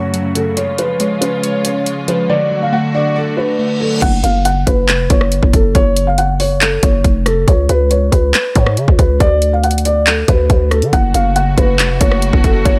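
A felt-muted upright piano carries a soft, dark melody over glassy, chorused digital keys and rich bowed strings in this melancholic, hard-hitting half-time trap excerpt in F# harmonic minor at 139 BPM. Overdriven drums with a hard-clipped kick and bright hats drive it from the start, and a reverse cymbal at 3.4 seconds gives way at 4.0 seconds to a growling, buzzy 808 bass, before the strings return at 10.9 seconds in a dry, up-front mix.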